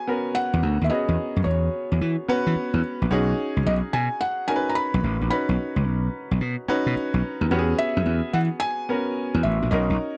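A punchy, overdriven slap bass sits up front from 0.5 seconds in this flirty, upbeat new jack swing excerpt with a swung sixteenth-note feel, while a clear concert grand piano plays accompaniment beneath a soft, felt-muted upright piano melody with intimate, audible action noise, all moving from E6 to B69 and back in a dry, close 1970s-style studio sound.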